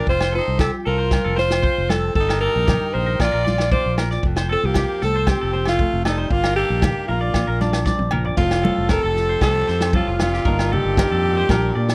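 A danceable, carefree highlife guitar band groove moves at 116 BPM in a straight 4/4, set in F mixolydian and cut from a longer piece. A bright alto saxophone carries the melody up front with light vibrato, while a breathy, raspy tenor saxophone sits in the background with a gritty second line. A fingerpicked flamenco guitar with fresh strings and audible finger squeak supplies accompaniment, and a clean, twangy electric guitar adds picked arpeggios coloured by subtle chorus and slapback echo. Underneath, a fingered electric bass sits up front beside a vintage drum kit with a punchy kick, dark cymbals and a rolled-off top, joined by thick-skinned congas played with soft hands and ringing agogo bells in the background. The chords cycle through F, Eb/G and Bb, and a drum fill at 7.9 seconds leads into a new section at 8.4 seconds, all captured in a dry, close 1970s-style studio sound with little reverb.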